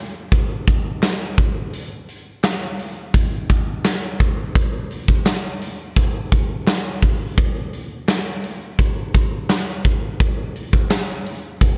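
Pop with little reverb, this short cut from a longer piece carries a romantic, uplifting mood in a straight 4/4. An up-front acoustic drum kit with a punchy kick, medium-tuned snare, hi-hat and tambourine drives from 0.3 seconds to the end, its big-room, natural character giving the beat real weight. A crisp group handclap sits barely audible beneath it from 1.0 to 11.1 seconds.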